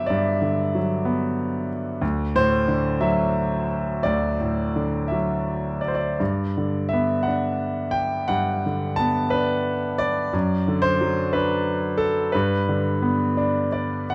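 Classical solo piano in G major, tender and lyrical, moving in 6/8 at about 55-62 BPM with free rubato. A clear concert grand carries everything alone across its span from D2 to A5, sitting up front, natural and intimate with deep bass and audible action noise. It drifts from Gmaj7 through D7, back to Gmaj7, then Bm/F# and on to G before a brief fill at 13.4 seconds. Light reverb frames a dark, warm production in this short passage cut from a longer piece.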